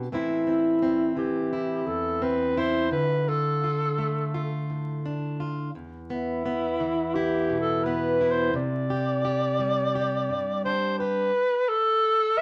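Yearning and stirring, this short folk fragment in steady common time pairs a plugged-in steel-string acoustic guitar with an alto saxophone, both placed up front. The fingerpicked guitar provides the accompaniment from the start, its tone warm, moving through A minor, D minor, an open E fifth and C suspended second. At 0.5 seconds the saxophone enters with the melody, a warm, smooth-topped voice shaped by vibrato and a classical manner of phrasing. When the guitar stops at 11.3 seconds, the saxophone carries on alone over a brief closing passage until 12.4 seconds. A wet studio reverb and a layer of vinyl crackle give the recording a softly aged, intimate atmosphere.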